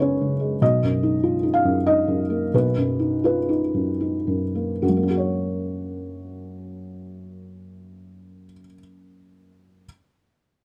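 A felt-muted upright piano, dark and mellow with thick felt and short sustain, sits up front in a close, dry room, playing intimate, hopeful classical accompaniment in F# major and 3/4 at a rubato 70-100 BPM, slowing down through the first 4.8 seconds over F#sus2 and Bmaj7 before settling on F# for the second section of this brief passage cut from a longer piece.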